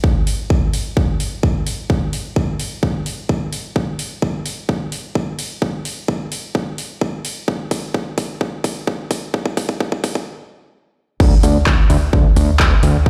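A punchy, tape-warm electronic kick opens this powerful, anthemic festival progressive house build at 129 BPM in a straight 4/4, joined by an overdriven big-room drum kit of metallic hats, handclaps and crash under a long filter sweep, with a drum fill from 3.8 seconds and a stop at 10.3 seconds before the drop at 11.2 seconds brings in a fat, detuned sawtooth bass with sidechain pumping, all heard through a stone-room sound as if played on a big system in a bare room.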